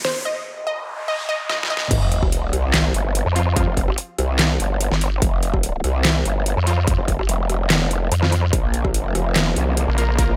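Heavy wobble dubstep, chaotic and aggressive, opens on a lush detuned unison pluck with digital delay over a riser and noise sweep build-up and an overdriven drum kit of deep snare and metallic hats, then drops at 1.9 seconds into a half-time assault of growling, saturated bass, a nasal, resonant vowel-sweep wobble bass entering at 3.3 seconds, a punchy overdriven electronic kick, bold ring-modulated orchestra-hit-like synth stabs, and an airy supersaw pad pumping in the background near the end of this cut from a longer piece.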